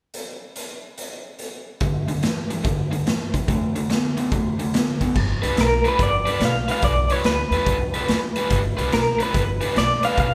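An electric guitar through a small old amp carries the melody in this gritty, swaggering electric blues shuffle, its slightly broken-up, lo-fi tone pulsing with tremolo from 5.6 seconds. The piece moves at 143 BPM in 4/4 with a 65% swing on the eighths in G mixolydian, and this short cut from a longer performance opens with the raw garage drum kit alone. The kit brings a boomy kick, a medium-tuned snare, hi-hat and crash, sounding saturated with a rolled-off top in a bright, pumping stone room. At 1.8 seconds a dark, overdriven electric guitar enters up front with a picked, compressed riff over G5 and D5 chords. A woody pizzicato upright bass with steel strings joins at 5.2 seconds as the harmony shifts to G7. The band plays live in one room, wrapped in a moderate large studio reverb.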